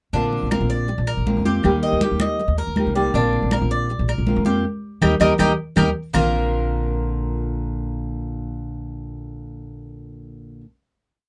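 The Cuban tres carries this short, sunny, danceable Cuban son and guajira piece with a bright, metallic arpeggiated guajeo on picked double strings, some of them octave-doubled. Close beside it, a deep, classical-toned nylon-string guitar is strummed and fingerpicked with muted slaps, while a dark, thumpy pizzicato upright bass plays a syncopated figure up front. High-tuned, thick-skinned congas with hard-hand slaps and open strokes sound compressed and saturated, and claves tap a two-bar time line softly in the background. The montuno vamp alternates between Bbadd9 and Eb, with a band accent at 4.6 seconds and a drum fill at 5.0 seconds. The percussion then falls away, and a final Bbadd9 chord rings from 6.1 seconds in a close, 1970s-style studio sound with little reverb.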